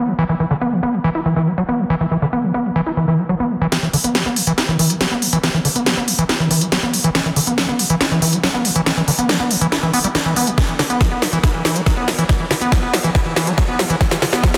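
A dense, heavily limited mix bathed in lush hall reverb carries this hypnotic psychedelic trance excerpt in E minor at 140 BPM, where a squelchy, gritty overdriven acid bass riff with sidechain pumping and dub echo opens alone, a techno kit of cracking snare and smooth hats joins at 3.7 seconds to drive a build-up with a drum fill and a filter sweep on the bass, and a punchy electronic kick lands at 10.6 seconds.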